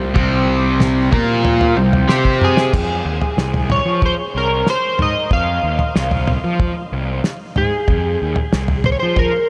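An up-front electric slide guitar, played with fingerpicks and slightly broken-up through analog chorus and delay, carries the melody from 2.4 s in this dark, mysterious psychedelic rock excerpt at 93 BPM in F minor. Beneath it run a round, fuzz-soaked picked bass and a cloth-damped, thuddy drum kit, both present from the start. In the opening they share the stage with a bright, double-tracked overdriven semi-hollow guitar riff with flanger and a clean tonewheel organ on slow rotary speaker until 2.7 s, the mix steeped in a huge ambient reverb for a dreamy haze.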